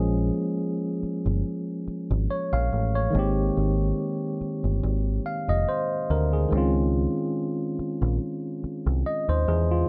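Romantic and smooth, this short R&B excerpt sways with a gentle swing as a clean tine electric piano, sounding through its built-in speakers, lays up-front chords over Bbm7, Abmaj9 and Dbmaj9 while a dark, round, amped deep dub picked electric bass sits close and direct beneath it, all in a light reverb.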